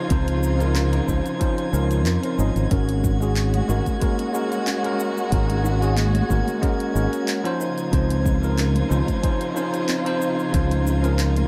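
A lightly swung 4/4 groove drives this smooth, blissful sunset chillout fragment, built on a deep, layered electronic kick and a deep house kit of handclaps, dark hi-hat and shaker in small room ambience, with very quiet, hard-handed bongos and congas joining at 3.0 s. A growly, punchy fingered electric bass sits up front beside a bell-like tine electric piano with tape echo, while a lush, distant string section holds sustained chords with vibrato and portamento, and a woody kalimba rings out arpeggios through its own tape echo until 10.7 s. High above, a glassy, slow-attack glass-harmonics texture with chorus and reverb hovers in the background as the chords move from Dbmaj9 to Ab9sus4 and back, within a dark production lit by light digital reverb.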